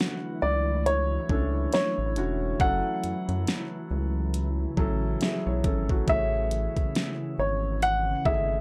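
A dark, mellow baby grand piano carries the melody up front in this short, romantic contemporary R&B excerpt, its upper-register line trailed by an analog delay. Beneath it, a felt-muted upright piano adds soft, intimate accompaniment, while a glassy FM pad with ensemble chorus and its own reverb holds ethereal sustained chords. A smooth, electronic drum kit sets a tender, swung groove, with a knocking kick, fat snare and warm hats sitting close to the listener. A rubbery, bouncy square-wave bass enters at 0.4 seconds, its plucked, hollow tone sitting low and forward in the mix. The harmony moves from Dmaj9 to F#m7 at 2.6 seconds and Amaj7 at 6.1 seconds, and the whole excerpt has a dry, gritty hardware character with little room sound.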